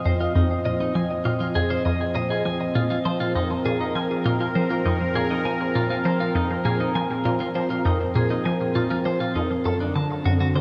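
Bathed in the lush wash of a large concert hall and carrying the soft grain of cassette tape, this mysterious, cosmic slice of sequencer-driven space music drifts along in a straight 4/4 pulse. An evolving, detuned sawtooth pad sits up front, sustaining chords with a slow attack and a filter swell, thickened by chorus and haloed in shimmer reverb. A squelchy, resonant blip pluck carries the low riff, its fast attack and short decay colored by phaser, tape echo and shimmer, giving the pulse a juicy, up-front bite. Above them a clean, twangy twelve-string electric guitar picks compressed arpeggios that ring through tape echo and shimmer reverb. The harmony rests on Fm7 until a shift to D7 at 9.7 seconds, and the passage, cut from a longer piece, ends at 10.6 seconds.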